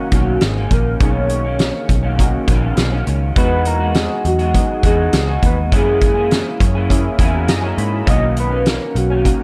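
A loose, straight 4/4 groove at 102 BPM from a roomy, distant indie drum kit with a fat snare and punchy kick drives this laid-back, nostalgic bedroom-pop excerpt in B major, where a round, foam-muted picked electric bass sits beneath a dark, slightly broken-up electric guitar with analog chorus and warbly pitch drift, mellow detuned analog keys with cassette-tape coloring add a fill from 6.3 to 8.1 seconds, and a warbling lead with vibrato, subtle chorus and tape echo carries the melody over Bmaj9, Emaj9 and F#9 chords in light small-room reverb.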